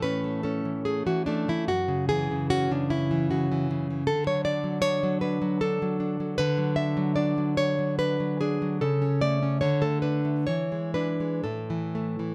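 Romantic solo classical guitar in a tender, sunny mood, moving in a rubato 3/4 that drifts between 59 and 80 BPM, tuned to A4 = 441 Hz. The fingerpicked nylon-string guitar sits up front with a warm, acoustic tone, its harmony passing from A through D and reaching E7 at 10.5 s before settling on A5. Close, detailed miking captures the instrument while a moderate recital-hall reverb adds gentle space around this short excerpt from a longer piece.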